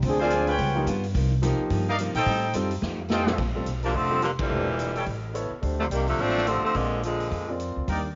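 An edgy, tight saxophone section carries the melody from 3.8 s in this energetic big band swing cut at 214 BPM, settling into Bb major after a trombone section opening with clear, close-miked vibrato and a drum fill that leads into the second section. Warm, distant trumpet stabs, a clear concert grand with deep bass and long sustain, and a bright, picked steel-string acoustic guitar with finger squeak fill out the accompaniment. A woody pizzicato upright bass and a swinging drum kit with punchy kick and medium-tuned snare drive the beat, with a band accent at 4.4 s, all set in a small room with moderate spring reverb and a softened top end.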